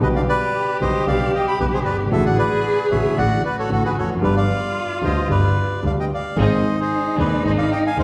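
A reedy, airy bandoneon carries the melody up front in this passionate, sultry tango excerpt at 114 BPM in 4/4, played with a rubato feel over chords moving from G/B to D/A, G and Ab. Beneath it, a distant bowed cello sings an expressive second line with vibrato and portamento, an intimate concert grand with deep bass and audible action noise gives a smooth, vintage accompaniment, and a close double bass, bowed sul tasto with light vibrato, anchors the low end. From 6.4 s, a chamber string section with a gut-string, period-style tone adds bowed stabs in the background, and the recording sits in the wet reverb of a church or concert hall.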